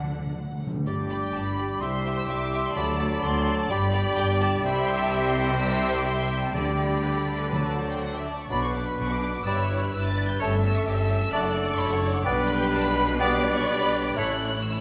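A rich, smooth first violin section carries the melody high above this spirited, lively classical-period orchestral passage in G major, moving at a quick 126 BPM with a flexible, rubato feel. A round timpani fill on soft mallets opens the music before oboe, hollow flutes, mellow bassoon, sustained French horn chords and trumpet stabs join at 0.9 seconds, while clear second violins, expressive violas with portamento, lush cellos and double basses fill out the strings. The whole orchestra sits in the generous reverb of a scoring stage, and the harmony moves through chords such as Bm, Em7/G and A7/G before coming to rest on A.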